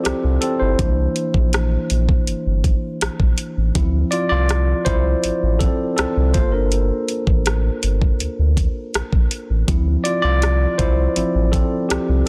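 A tine electric piano, clean and coloured by its built-in speakers, carries this longing, moody excerpt of contemporary R&B at 81 BPM in D minor, its chords moving from Dm9 through C7 and Gmadd9 back to Dm9. Beneath it sits a round, sine-like sub bass with a fast attack and mellow sustain, while a produced electronic drum kit supplies a knocking kick, metallic hi-hats and rim clicks. The sound is dry and close, with every part up front in a dense, heavily limited modern master.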